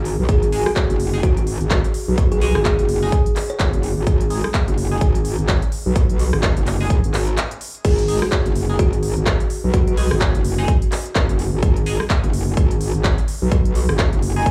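A punchy, overdriven electronic kick sits up front with a swung sixteenth-note feel in four, entering at 0.3 seconds to drive this swaggering, bouncy bass house excerpt cut from a longer piece. A layered big-room dance kit arrives even earlier, at 0.1 seconds, with crisp hats, handclaps, rim clicks and crash cymbal, all carrying their own overdrive grit. From the start, a metallic wobble bass dominates the low end, aggressive and saturated, thickened with chorus and pumping against the kick. A band-passed chord stab with a nasal, sawtooth bite adds bright, decaying hits treated with phaser, lush chorus, dub echo and the same pumping. In the background, a woody, ringing kalimba plays phrases through dub echo, returning after a brief break at 7.4 seconds, and a small digital room gives the mix a tight sense of space.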